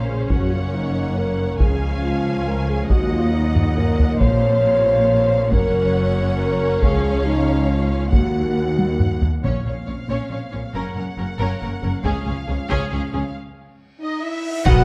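A dark, warm scoring-stage sound carries this cut from a longer cinematic orchestral piece, a dark and heroic 3/4 passage at 138 BPM where a rich violin melody and a lush second violin line ride over viola accompaniment, mellow French horn and tight trombone chords, focused double basses and lush cellos, and heavy-stick taiko with fills, a very quiet hard-mallet timpani note at 9.4 seconds, and, after a break from 13.4 seconds, a huge bright reverse cymbal and impact landing with a clear trumpet stab and bright clash cymbals with bass drum at 14.7 seconds.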